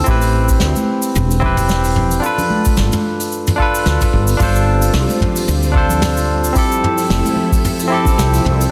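A brush kit carries a swung sixteenth-note groove at 111 BPM in 4/4, with cabasa, hi-hat, snare and toms, and a soft clip on the snare, all underpinned by a deep, overdriven analog kick that sounds re-recorded in a large room. High-tuned congas with a thick-skinned tone sit in the background from 0.8 seconds, giving this smooth, warm sunset chillout excerpt a relaxed lilt. A woody fretless bass, growly and round, moves through the low register with an ensemble chorus, while a barky tine electric piano, bright and lightly overdriven with delay, sits up front as accompaniment. The harmony moves from Am7 to G7, then G7sus4 to Fmaj7. At 4.4 seconds a silky vintage string machine enters in the background with slow-attack, chorused pads. A lush hall reverb and a dense, heavily limited modern master hold the mix together.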